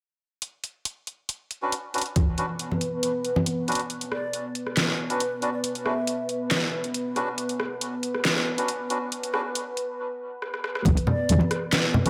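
Set in a moderate echo chamber with its lows trimmed, this dark, meditative deep dubstep fragment rides a half-time groove of layered electronic drums with a deep snare, handclaps, hi-hat and rim click, joined at 2.2 seconds by a muffled, thumpy kick and bright, up-front congas. Reedy melodica stabs drift through a low-pass filter and dub echo over a moody, slow-attack analog pad, while a breathy ney with vibrato sings its melody. A build-up and break give way at 10.9 seconds to a drop where a heavy, saturated wobble bass bursts forward on a B minor chord.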